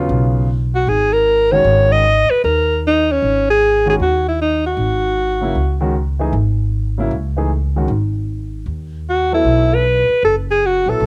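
This short fragment has the light reverb and soft haze of a home cassette recording, with the piano and saxophone carrying the tape's grainy character. It is a hypnotic, intense piece of modal jazz in a swung four, moving from a minor eleventh opening into long stretches of suspended seventh harmony. A warm grand piano comps underneath while a woody, plucked upright bass with steel strings sits up front and runs through the whole passage. The clear alto saxophone takes the solo from 0.8 s, singing with light vibrato, a soft attack and scooped notes. It drops out at 5.8 s and returns at 9.1 s to carry the line to the cut.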